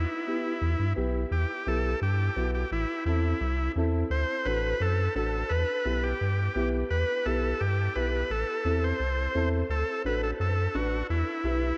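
Danceable and fiery, this Latin cut from a longer piece moves at a brisk 172 BPM in straight 4/4, set in E minor and tuned to A4 = 442 Hz. An overdriven combo organ carries the melody up front, its vintage, buzzy tone shaken by heavy vibrato. Beneath it, a rubbery square-wave bass bounces through hollow, nasal notes with a resonant filter pluck and a moving notch, its fast attack giving each low tone a firm, forward presence. A dark upright piano enters at 0.3 seconds with mellow, woody accompaniment and long sustain, sitting lower in the mix than the other two parts. The harmony cycles through Em, Am and D, and the whole performance rings out in a vast, echoing cathedral-like space.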